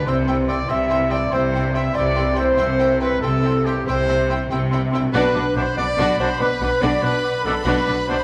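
Cinematic, heroic adventure film score with an adventurous, heroic mood, moving at 95 BPM in a straight 12/8 and cut from a longer piece. The symphonic violin section carries a lush, expressive melody with vibrato and a soft attack, while a mellow French horn section, the most prominent part, holds sustained chords alongside a very quiet, bright trombone section. A clear, distant trumpet adds stabs, and a concert harp rings out fingerpicked arpeggios at a very low level beneath the orchestra. Second lines come from a silver concert flute and a warm oboe in the background, a very quiet, roomy clarinet, and a second, smooth and even violin section, with an intense, very quiet viola section in accompaniment. Rich cello and double bass sections anchor the bass as the harmony moves from C to Bm at 5.1 seconds, all set in a wet scoring stage reverb.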